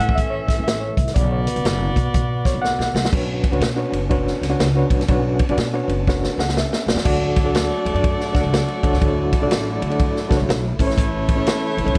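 A gritty, overdriven reed electric piano with fast tremolo takes a solo over the first 3.1 seconds of this danceable, uplifting 1960s-style soul excerpt at 122 BPM in D major, alongside up-front vintage drums with dark cymbals and a punchy kick, thumpy woody upright bass, a fat tonewheel organ with slow rotary speaker sitting in the background, and a distant, roomy horn section that drops out at 2.9 seconds and returns at 7.0 seconds, all under vinyl crackle with little reverb.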